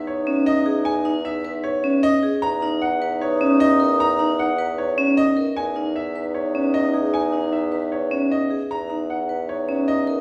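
A brilliant concert grand piano carries the melody between C#5 and A#5, placed up front with a deep bass, in this bright, propulsive excerpt of minimalist pattern music in E lydian. The pulse runs at 153 BPM in a straight 4/4, over a harmony that moves from Emaj7 to Bmaj7/E, back to Emaj7, then to B/E at 8.7 seconds. A vibraphone struck with hard mallets spins arpeggios between C#4 and B4, its metallic, ringing tone shimmering with a medium motor vibrato. A wooden-headed alto flute holds a second line on D#4 with an airy, straight, tongued tone, while a mellow, vintage-sounding bassoon anchors the bass on E2. The ensemble sits in a wet recital hall with a reverb time of 1.5 seconds, heard from further back in the room, with a faint mains hum underneath, and the passage is cut from a longer piece after 10.2 seconds.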